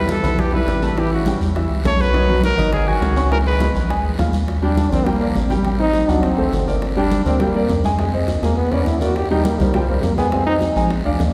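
This lively, danceable Afro-Cuban jazz excerpt moves at a brisk 205 BPM in straight 4/4, cut from a longer piece. A clear, breathy trumpet with vibrato carries the melody up front until 3.7 s, while a bright, punchy trombone plays a second line beneath it. At 4.5 s the harmony settles into Eb major and the trombone takes a forceful jazz solo with scooped notes, continuing until 10.6 s. An intimate baby grand piano accompanies throughout, its short sustain and audible action noise giving it a natural feel. A rubbery, hollow square-wave bass sits dark and bouncy at the front of the mix with a resonant filter pluck and a moving notch. Very quiet round, low-tuned bongos and thin-skinned congas play alongside a raspy guiro, all set within the long, wet reverb of a church or concert hall.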